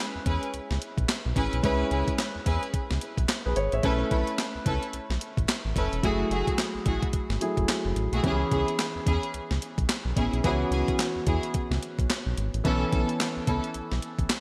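This R&B cut in a new jack swing style moves at 109 BPM in 4/4, with sixteenths swung at 61% for a bouncy, slick feel in C# minor, tuned to A4 = 436 Hz. A clean 12-bit drum machine sits up front with a thumpy kick, medium-tuned snare, hi-hat and handclaps, its kit washed in gated reverb. A round, deep analog bass blending sawtooth, sine and triangle tones holds the low end with a fast attack and sustained notes. A warm concert grand piano with audible action noise plays accompaniment through a lush chorus, while a close, woody string section adds bowed stabs with vibrato and delay. The harmony cycles through C#m7, B9sus4 and F#m9 before returning to C#m7. The bright 1980s-style digital production sits in a moderate hall reverb, and the passage is a fragment cut from a longer piece.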